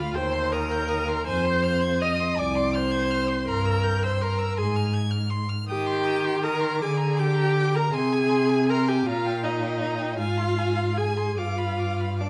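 In a slow 6/8 at 54 dotted-quarter beats per minute, played with free rubato, this melancholic, solemn romantic movement for string quartet in C minor moves through its harmony toward a closing G7. A smooth, vibrato-laden first violin carries the melody high above a focused, close second violin line, while a rich, expressive viola with soft attacks and portamento sits up front, and a clear, even cello bass enters at 0.2 s. The quartet is bathed in a large studio reverb with a 1.4-second decay and a softened, darkened top end, and the passage is cut from a longer piece.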